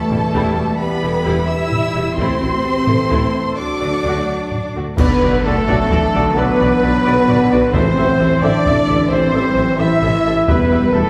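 Cinematic, epic orchestral film score in 12/8, heroic and dramatic, cut from a longer piece and heard from further back in a wet scoring-stage reverb. Lush, bowed violins carry the melody up high with expressive vibrato and a soft attack, while a second violin line, violas, cellos and double basses sit in the background as the harmony moves from Em through Am and D. Mellow French horns hold sustained chords over smooth background trombones, with a very quiet tuba sitting alongside the bowed basses down low. A taiko ensemble struck with heavy sticks drives the rhythm throughout, and hard-mallet timpani strike briefly near 2.2 seconds. At 5.0 seconds a band accent lands with bright clash cymbals and concert bass drum as clear trumpets enter with stabs over Bm, and the timpani return from 7.7 seconds as the music settles onto Am and finally Em.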